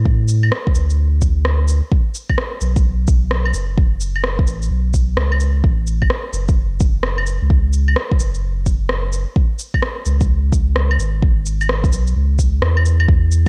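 A round, sine-like sub bass opens this future garage excerpt, its sustained low notes pumping against a deep, up-front electronic kick that enters at 0.1 seconds with gritty 12-bit sampler character. Shaker, claves and rim click join at 0.3 seconds, tape-warm and re-recorded in a large room, all riding a swung 16th-note feel at 129 BPM in 4/4. Light reverb and a cassette-tape finish give the track a ghostly, rainy mood.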